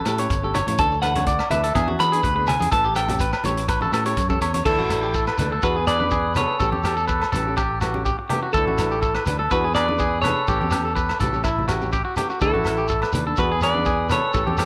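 This carefree highlife guitar band excerpt in D major moves at a straight 124 BPM. A bright, twangy lead guitar sits up front over a second clean electric guitar, whose picked arpeggios carry spring reverb and analog delay, while a fingerpicked nylon-string guitar with audible finger squeak sits in the background. A dark, round fingered bass and a vintage kit with a punchy kick and rolled-off top anchor the groove, and ringing agogo bells, a grainy shekere and low-tuned, saturated congas add a background layer. At 4.7 seconds, a breathy, whispered trumpet with scooped notes and light vibrato enters as an intimate second line, all cycling over A7, Dsus2 and E7 chords in a small room with moderate plate reverb.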